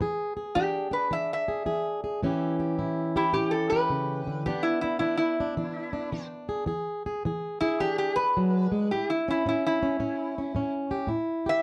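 Acoustic country blues in E mixolydian, this gritty, rollicking excerpt moves at 108 BPM in 4/4 with a swung eighth-note feel, its chords shifting between E7 and A7. A dark, boxy fingerpicked acoustic guitar carries the accompaniment from the start, and at 0.6 seconds a metal-body resonator guitar enters, its nasal, metallic slide melody played with a steel bar and fingerpicks. Both guitars sit up front in a small room with moderate reverb, giving the whole a dark, warm production.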